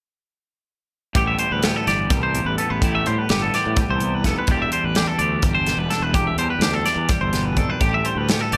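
Intricate and restless, this short cut from a longer piece sits between math rock and midwest emo, moving at 252 BPM in eighths in a straight 7/8 and centred on A minor. A twelve-string electric guitar, a fingered electric bass and a modern studio drum kit all enter at 1.1 seconds, with a twangy electric guitar joining at 1.2 seconds to spin arpeggios high above. That lead guitar is bright, clean and compressed, carrying an analog delay and sitting up front alongside the drums, while the twelve-string fills out the accompaniment with a bright, clean, twangy picked tone. Beneath them the bass is overdriven into a growly fuzz, and the kit offers a punchy kick, a medium-tuned snare and hi-hat in a mid-forward studio-room sound. The harmony moves from Am11 to Em7 and back to Am11 at 7.8 seconds, and the dry mix keeps every picked detail close and clear.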